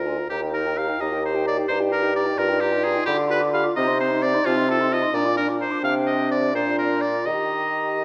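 A bright, up-front oboe carries the second line in this graceful, lively classical-period movement for wind quintet, cut from a longer piece and moving in 6/8 with a rubato feel. Above it, an airy, hollow flute plays the tongued, straight-toned melody from the background, while a distant, roomy clarinet and a warm French horn fill in the accompaniment. A bassoon with light vibrato anchors the bass up front, and all five parts play throughout the 8 seconds in a moderate recital hall reverb.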